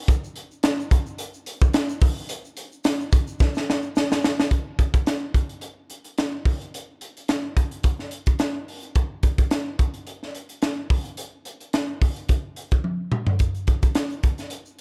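A crisp fusion drum kit carries this upbeat, urban pop groove at 108 BPM in 4/4, with a light swing on the sixteenths. Played up front with hi-hat, kick, snare and toms, it has a high-tuned snare, a tight kick and a saturated, gritty edge, set in a small, pumping room. A very quiet egg shaker adds a grainy, bright shimmer of its own small-room acoustic sound, dropping out at 4.5 s as the music moves into its second section and returning at 13.4 s. A drum fill around 3.4 s leads into that change, and another fill follows later on. Light reverb and a dark, warm production round out this excerpt cut from a longer piece.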